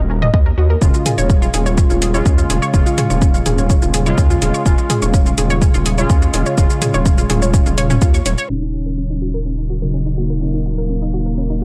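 Melodic techno at 125 BPM in Eb minor, hypnotic and dramatic, where a gritty, aggressive synth bass sits up front under a round, warbling analog pluck arpeggio with filter sweeps, bold brassy synth stabs entering at 0.8 seconds, an overdriven deep kick and metallic-hatted house kit with toms and shaker that stop by 8.6 seconds, and then an airy, detuned supersaw melody and a very quiet downlifter arriving at 8.5 and 8.8 seconds in a dark production with little reverb.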